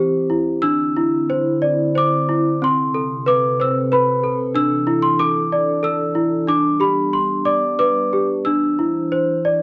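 Tender and innocent, this short excerpt of a children's lullaby in C major drifts at 91 BPM in a rubato 3/4, with a worn, bell-like celesta, slightly out of tune and up front with plate reverb, singing a sweet melody over a warbling, detuned tape-like pad that holds nostalgic sustained chords through chorus, moving from Cadd9 through Amadd9/C, Dsus2 and G back to Cadd9 in a dark, warm production.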